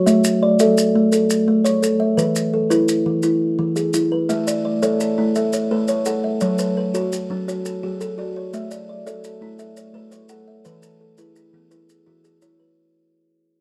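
A dark, softly reverberant sound frames this brief cut from a longer Southern African traditional piece, built on a rippling, hypnotic mbira-style cycle in a steady, straight 12/8. A woody, hollow-boxed kalimba sits up front from the first moment, its mellow fingertip-plucked arpeggios ringing smoothly over a gently turning progression of A, E and F#m. Close, grainy maracas add a faint acoustic shimmer underneath from 0.1 seconds. At 4.3 seconds a second, buzzing kalimba joins, thumb-plucked with a boxy small-room character, its quieter arpeggios reaching a little higher and weaving into the cycle. The whole passage fades out across its length, keeping the trance-like loop circling until it slips away.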